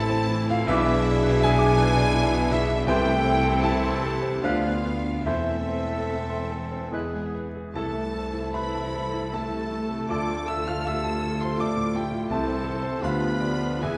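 A clear, intimate grand piano with audible action noise leads this tragic, brooding romantic excerpt in A minor, moving in a rubato 3/4 at 70-86 BPM, with rich violin sections carrying melody and a second line alongside a pure, distant flute, oboe and clarinet, while viola and a mellow bassoon accompany, French horns and bright trombones hold sustained chords under trumpet stabs, and an intense cello section and lush double basses anchor the bass, all in a moderate recital hall reverb.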